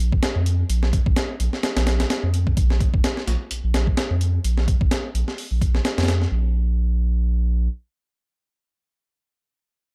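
Breakbeat with a raw, funky feel, built on a swung sixteenth-note groove in 4/4 and cut from a longer piece. A saturated sub bass sits up front, deep and thick with a sine-like core, a fast attack and sustained notes, holding the low end until 7.7 seconds. The breakbeat sampler-style drum kit plays hi-hat, kick and snare with a compressed, gritty character, pairing a thumpy kick with a high-tuned snare in a studio reverb. The drums drop out at 6.3 seconds as the music moves into a second section. The production has a dark, digital ambience.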